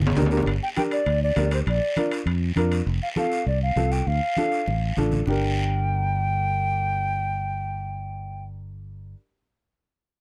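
A dry, close 1970s-style studio sound with light reverb frames this driving, danceable cumbia fragment in G minor at 200 BPM, where a punchy, up-front fingered electric bass and a woody, slightly detuned upright piano carry a Gm–Bb–F–Dm progression beneath an airy, hollow concert flute melody with vibrato and a crisp attack that enters at 0.6 seconds, while soft-handed, damped congas, a raspy guiro and ringing, metal-shell timbales and cowbell fill out the percussion, the timbales and cowbell falling away by 2.9 seconds and the congas and guiro at 5.3 seconds after a drum fill.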